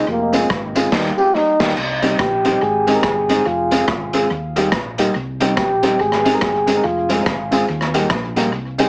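A mellow, close-miked trombone leads this bouncy, joyful ska excerpt with a brief solo, swung at 142 BPM over Fm, Eb, Cm and Ab, with a band accent at 0.9 seconds, before a clear tonewheel organ with a stopped rotary speaker takes the melody from 2.2 seconds. Beneath them, a clean, picked hollow-body jazz guitar, a woody, boxy upright piano playing stabs, a round, amped short-scale bass and a gritty, saturated garage drum kit with a punchy kick and dark cymbals drive the groove, joined briefly by a jingly, very quiet tambourine, with tape echo on the trombone, organ, guitar, piano and drums. The mix carries a heavily compressed, small-speaker radio sound in a small room.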